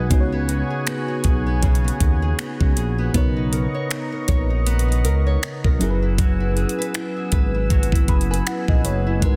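Sensual and moody, this contemporary R&B excerpt sits at 79 BPM with a swung sixteenth-note feel, moving from C#7sus4 to F#9sus4 at 5.8 seconds. A trap kit of knocking kick, metallic hi-hats and finger snaps, with soft clipping on the snare, sits up front beside a smooth, dark synth bass with ring modulation and vibrato. Around them, a round, full-bodied FM electric piano with chorus adds a fill at 7.7 seconds, a small fingerpicked nylon-string guitar plays arpeggios through digital delay, and a lush, warbling vintage pad holds detuned unison chords in a dense, heavily limited modern mix with digital ambience.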